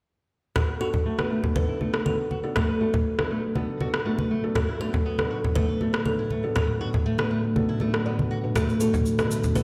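Earthy and spiritual, this afro house excerpt moves at 120 BPM in a straight 4/4, centred on B minor pentatonic and opening on a Bm7 chord. From 0.6 seconds a woody, ringing kalimba carries the melody through a digital delay, alongside fingerpicked flamenco guitar arpeggios with fresh strings and audible finger squeak, softened by a low-pass filter and their own delay. Close, dry congas played with soft hands sit up front, while an electronic rim click, overdriven and layered, adds a produced edge. A felt-muted upright piano enters at 0.8 seconds with mellow, dark stabs, its action noise audible in the background, and a deep, detuned sawtooth pad with a sub octave and chorus swells in slowly at 3.4 seconds, carrying a filter sweep. A grainy cabasa joins late at 8.6 seconds, and the whole mix sits in a wet recital-hall reverb played back through a big sound system in a bare room.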